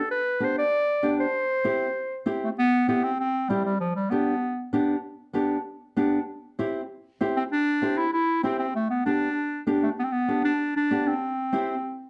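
A clear, classical-style clarinet leads this joyful, danceable latin piece, playing its solo melody up front before falling silent at 4.7 seconds and returning at 7.4 seconds. A small, thumb-plucked nylon-string guitar enters at 0.4 seconds to accompany it, its acoustic tone carrying audible finger squeak and sitting close in the mix. The harmony moves steadily between G and C in a straight four-beat feel, with a short opening section giving way to a longer second one. Moderate reverb from a large studio surrounds the parts, and the production leans dark and warm. The passage is cut from a longer piece.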